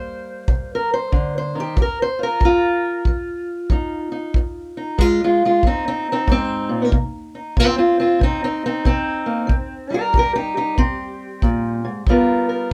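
A swung 4/4 feel drives this brooding, soulful piece of acoustic country blues, cut from a longer performance. A dark, woody parlour steel-string guitar, played up front with old strings and a boxy tone, fingerpicks the melody from the start over changes that move from C7 and F7 to C minor before landing on G7#9. From 0.5 seconds a tight, brushed kick drum in a small room keeps time beneath it, all captured with close, detailed microphones and very little reverb.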